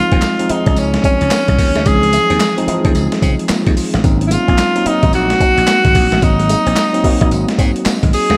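A warm, up-front tenor saxophone with light vibrato carries the melody over a worn, slightly out-of-tune tine electric piano, while a bright, twangy guitar riff through an envelope filter and analog chorus sits in the background of this confident, punchy new jack swing excerpt at 110 BPM with a swung sixteenth feel. A growly slap bass and a gritty, overdriven sampler-style drum kit with a thumpy kick, high-tuned snare, handclaps, hi-hat and tambourine drive the Dbmaj7 to Ab7 changes, with a hollow group handclap barely audible beneath. Slapback echo touches the saxophone, piano and guitar, a lush hall reverb gives a big arena sound, and the electric piano adds a fill from 7.6 seconds.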